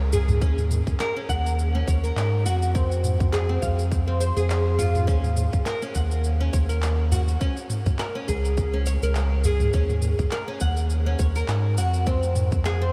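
A woody, plectrum-plucked oud spins meditative arpeggios through a diffuse ambient delay while a round, up-front sub bass with tube saturation holds the low end, opening this mystical organic downtempo fragment with a gentle swing. From 0.1 s a tape-toned electronic kit of cabasa, handclaps and toms arrives together with a very quiet, small-room udu, and a tight electronic kick enters at 0.4 s as the harmony drifts between Ebm7, Fm and Db5. The whole mix is dreamy and soaked in a huge reverb.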